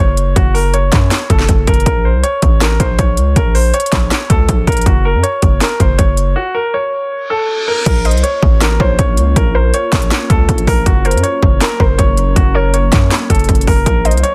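A clear, polished concert grand piano opens this brooding trap excerpt, its melody filtered and trailed by digital delay, over a distorted 808-style bass that hits heavy and saturated with a fast attack and decaying tail. The trap kit enters almost at once in a hard-hitting half-time feel, with a hard-clipped kick, sharp snare, crisp hats, handclaps and crash cymbal sitting up front with a tape-warm character. A break arrives at 6.4 seconds, and a reverse cymbal rises into the second section at 7.9 seconds. There a warbling, lo-fi pluck adds a mellow, detuned second line with chorus and delay, while a glassy, ethereal FM pad holds dark sustained chords in the background, softened by ensemble chorus and reverb. The mix is dense and heavily limited in a digital ambience, with the drums and bass dominating.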